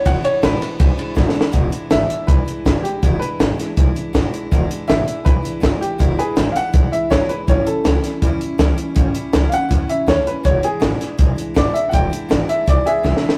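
Rowdy and retro, this rockabilly excerpt drives along at 162 BPM in E mixolydian, opening with a brief upright piano solo that carries the melody up front with a woody, boxy tone and short sustain, before a drum fill at 1.2 seconds leads into the main section. A bright, full-bodied picked steel-string acoustic guitar supplies accompaniment with audible finger squeak, while a thumpy pizzicato upright bass on gut strings anchors the low end and a compact cocktail drum kit adds a punchy kick, a high-tuned snare, hi-hat and ride with a dark, rolled-off top. The changes move from E7 to A7 at 7.5 seconds and back to E7, all captured as a rough rehearsal-room recording with tube saturation and a moderate stone-room reverb.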